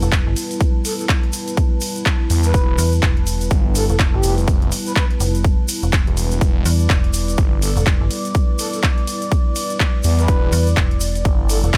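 A punchy, overdriven electronic kick sits up front from 0.1 seconds, driving this bouncy, swaggering bass house cut at 124 BPM in E minor, with a 60% swing on the sixteenths and a single Em chord underneath. Two bass parts carry the low end: a metallic, digital FM bass with a fast, decaying attack plays from the start, and at 2.3 seconds a thick, swirling detuned saw bass joins with phaser and tube saturation, both pumping against the kick. An overdriven big-room drum kit adds handclaps, hi-hat and ride cymbal, while a grainy, mellow tube shaker sits in the background. Above, a soft, breathy, flute-like synth lead with vibrato, subtle chorus and digital delay carries the melody between G4 and B4. A deep, moody analog pad with ring modulation holds sustained chords, and a warbling, nostalgic lo-fi pad with its own reverb adds texture far behind, both breathing with sidechain pumping inside a digital ambience.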